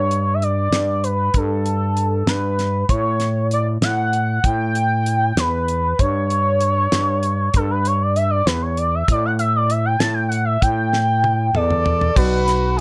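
Bright and driving, this short progressive instrumental cut in an uneven 5/8 meter sets a shimmering, nasal pulse-width lead with chorus over a growling, thick FM bass and a dry, damped 70s drum kit with a fat snare and tight kick, moving through Gadd9, A5, Em6 and A7sus4 before a drum fill at 10.9 seconds, during which a clear alto saxophone enters with scooped notes at 11.6 seconds, followed by a brief concert grand piano touch in the background at 12.2 seconds, all in a light reverb.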